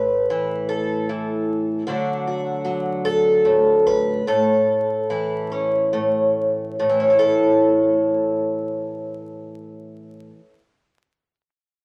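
A picked twelve-string acoustic guitar plays alone from the start, its shimmering, octave-doubled voice sitting up front with a boxy body and the occasional finger squeak. This short fragment of a hopeful, gentle folk piece moves in a straight 6/8 through A5, D and A, slowing from 1.9 to 6.8 seconds before a brief closing passage. A moderate studio ambience and a layer of vinyl crackle surround the playing.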